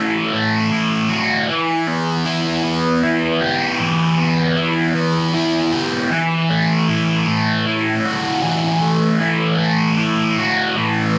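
A thick, bright fuzz guitar opens this trippy, mysterious rock fragment, playing alone and up front in a slow 6/8 at 52 beats per minute with a straight feel. The picked, double-tracked electric guitar carries distortion and a phaser, ranging from A2 to G4 as the harmony moves from F#m over E to Em at 1.5 seconds and back at 6.1 seconds. A moderate plate reverb with a long tail surrounds the guitar, and it stops at 11.2 seconds as the cut from a longer piece ends.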